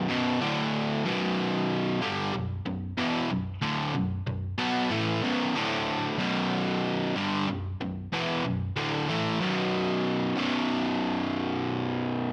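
Rock in B minor at 93 BPM in a straight 4/4, this short cut from a longer piece has a menacing, driving mood. A cranked stack guitar carries it alone from 0.0 to 12.3 seconds, electric and picked, its bright overdriven tone double-tracked and placed up front. The part moves between D5 and Bm chords, returning to D5 at 5.6 seconds before settling back on Bm, and it ranges from B1 to B3. At 10.4 seconds the music shifts into a new section built on a B5 chord. A moderate large-studio reverb with a 1.1-second decay gives the sound a digital ambience.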